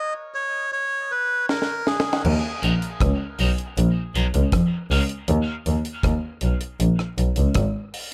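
A straight, steady four-beat pulse runs through this short, hypnotic dub reggae piece, cut from a longer track and set in a deep, echo-heavy mix with light reverb. It opens on a break where a melodica plays alone: its plastic-cased tone is reedy, breathy, nasal and mellow, sits up front, and is softened by a low-pass filter and trailed by dub echo. A drum fill arrives at 1.5 seconds as the dry, acoustic kit enters, dark and rolled-off at the top, with a high-tuned snare, tight kick, rim clicks, hi-hat and crash cymbal placed close to the listener. From 2.2 seconds the harmony moves through Ebm, Bbm and B, underpinned by a single bowed double bass that is muted con sordino, veiled and distant in character with gentle vibrato, yet prominent in the balance. An electric guitar at the edge of break-up adds picked, scooped accompaniment, slightly broken-up and warm, shaped by high-pass and low-pass filters, a phaser and dub echo, and sitting quieter than the other parts.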